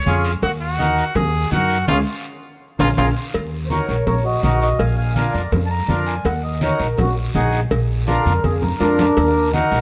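A clear, punchy trumpet with light vibrato opens this fiery cumbia fragment, playing a vintage, pop-style solo line that ends at 3.1 seconds. Beneath it, at a driving 165 BPM in straight 4/4 and Eb minor, a woody, thumpy pizzicato upright bass on gut strings sits up front. A full, reedy accordion with dry tuning and a band-limited tone supplies the accompaniment. The percussion pairs bright, damped, low-tuned congas, compressed and saturated in the background, with a raspy guiro and close, ringing cowbell and timbales. After a band accent and drum fill, the harmony turns to Eb harmonic minor, and a mellow, dark, smooth accordion with slow beating takes the melody from 3.7 seconds over chords alternating between Ebm and Bb. A second drum fill arrives at 8.1 seconds, and the sound carries a light reverb.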